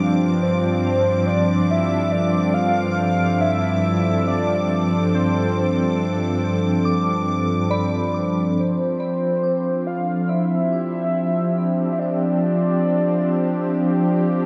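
Bathed in a lush, dark hall reverb, this luminous ambient excerpt at 70 BPM sets a smooth, detuned analog pad with chorus and tremolo up front, a soft FM synth bell playing arpeggios in the background, a very quiet nasal analog drone and a clear bowed violin section texture, before a velvety sub-octave synth lead melody enters at 0.4 seconds and carries on with the pad after the bell, drone and violins drop away near 8.7 seconds, as the harmony moves to G7sus4 at 8.6 seconds.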